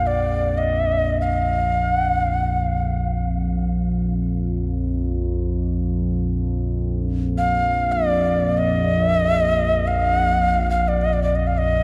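World meditative music in free time and Bb major, tuned to A4 = 444 Hz, this spacious 11.8-second fragment of a longer piece sets a breathy, close-miked cedar flute with crisp, chiffy attacks and expressive vibrato over a dark, evolving analog drone of detuned sawtooth and pulse waves with chorus, slow attacks and long, sustained tones, all bathed in a huge, wet reverb with a 3.9-second tail.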